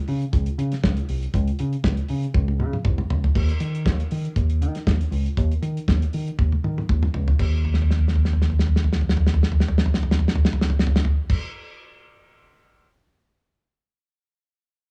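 A straight 4/4 disco groove, sultry and glamorous and cut from a longer piece, rests on a deep, round, punchy fingered electric bass sitting up front alongside a damped 70s drum kit with a fat snare, tight kick and dark cymbals. The drums sound dry, airy and polished with a rolled-off top and a cassette-tape tint, and they break into fills at 2.3 s and 6.4 s, then into an extended fill from 7.6 s. The whole piece carries the sound of a home cassette recording, with a small-room ambience and little reverb.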